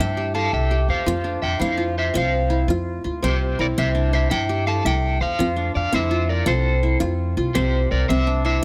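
A rolling 12/8 pulse at 111 BPM in dotted quarters, played with a straight feel, carries this sunny, carefree highlife excerpt in C major, tuned slightly low to A4 = 436 Hz. Up front, a picked electric guitar at the edge of break-up sings the melody between G4 and A5, its slightly gritty tone shimmering with harmonic tremolo. Beneath it, a bright, full-bodied steel-string acoustic guitar picks out accompaniment in a narrow band from C4 to F4, stopping at 8.4 seconds, while a plectrum-plucked qanun spins arpeggios with a bright edge, its triple strings trailing through analog delay. The upright bass sits prominently, a woody, growly pizzicato voice with a thumpy attack on steel strings, moving between C2 and G2. The harmony rests on C, shifts to F5 at 1.1 seconds and returns to C at 7.6 seconds, all set in light reverb with a small-room ambience.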